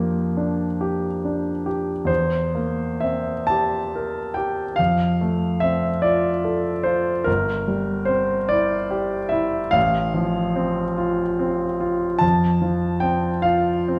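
A clear grand piano sits up front in this romantic classical nocturne, its intimate, natural tone carrying audible action noise as it moves through a serene, nostalgic passage in F major. The slow 12/8 pulse of 40-50 BPM in dotted quarters breathes with rubato while the harmony drifts from Gm7/F through C7/E and C7/G before settling on F. A wet recital hall reverb with a 1.4-second decay surrounds the instrument across this 14-second fragment of a longer piece.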